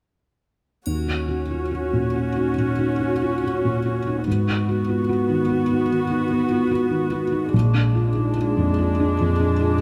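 A felt-muted upright piano sits up front, its thick felt giving a soft, mellow and intimate tone, with the natural action noise of the instrument clearly audible. This sorrowful, moving passage of cinematic film scoring, cut from a longer piece, moves at 72 BPM in 4/4 with a rubato feel, in E-flat minor. A con sordino viola section plays alongside the piano from 0.9 seconds, bowed with vibrato and a veiled, dark ensemble sound that keeps its top smooth, and both parts carry on to 9.8 seconds. A dry, close triangle adds a faint, dark acoustic tone in the background from 0.9 until 2.5 seconds. The harmony moves from Ebm7 to Abm7 and then to Bb7, and close, detailed microphones with light reverb keep the whole quiet scene near.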